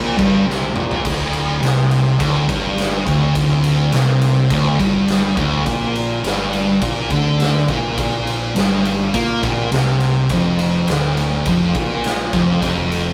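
A rough rehearsal-room recording with light reverb opens on a stoner and doom metal riff in D minor, moving at 104 BPM in a straight 4/4 with an ominous, hypnotic pull. A thick, double-tracked fuzz guitar sits up front, picked and distorted, grinding out the riff from D2 to Bb3. Beneath it, a growling fingered electric bass with overdrive and tube saturation stays in the background, its bright, amped tone reaching down to D1. A big acoustic rock kit enters at 0.2 seconds, and a drum fill from 0.5 to 1.1 seconds leads into the main section, where punchy kick, a medium-tuned snare, toms, and bright crash and ride cymbals ring in a stone-like room. The harmony shifts from Gmadd11 to D7sus4 and back before settling on Dm at 10.3 seconds in this short cut from a longer piece.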